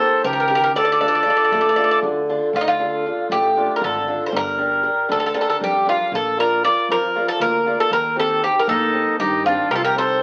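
A bright, metallic bouzouki with double and octave-doubled strings carries the up-front melody from the start alongside a reedy accordion second line that drops out at 2.0 seconds and returns at 8.7 seconds, over a boxy picked ladder-braced acoustic guitar and a woody pizzicato upright bass entering at 0.2 seconds, giving this brooding, cool Greek folk excerpt in D phrygian a straight 235 BPM 7/8 pulse, all bathed in a large studio reverb and the crackle of a very old 78 rpm record.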